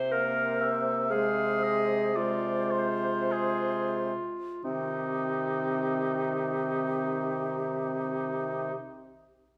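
Melancholic and elegiac, this brief excerpt from a slow romantic classical movement for wind quintet drifts in 3/4 at 43-64 BPM with a rubato feel in C minor, slowing over the first 4.6 seconds before a second section begins. An airy, mellow silver concert flute carries the melody with expressive vibrato and rolled-off highs, while the oboe adds a second line touched with light vibrato. A bright, up-front clarinet and a distant, roomy French horn supply accompaniment above the bassoon's clear, soft-attacked bass, all set in a wet recital hall with a faint mains hum.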